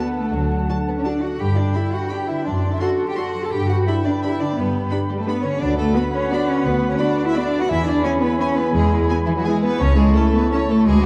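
Moving in 3/4 at 171 BPM with uneven, rubato beats, this sweeping, festive classical passage is cut from a longer piece and settles into A major from 5.6 s. A clear, intense violin section carries the melody in the background, while a focused, richer violin section, a dark cor anglais, an airy flute group with rolled-off highs and a soft-attacked clarinet weave second lines over smooth violas, very quiet distant French horns holding sustained chords, and ringing fingerpicked harp arpeggios. A distant cello section and an up-front bowed double bass section, entering at 0.3 s, anchor the bass in a dark, warm production with moderate scoring stage reverb and vinyl crackle.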